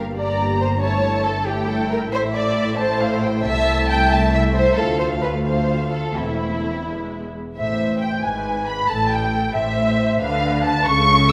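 Heard through a moderate concert-hall reverb, this restless, urgent snippet of a quick classical-period movement for string orchestra moves in a rubato 6/8 at 91 BPM in A minor, every section playing con sordino with a veiled, dark tone. Up front, the symphonic violins carry the melody with soft-attack vibrato while a lush studio violin section shapes a second line alongside them, violas fill in the accompaniment, distant cellos with light vibrato anchor the bass, and double basses add a gentle-edged low foundation. Harmonies wander from G minor and A7 toward a cadence on E before a contrasting passage begins at 7.6 s, shifting through A minor and G-sharp minor to settle on D minor.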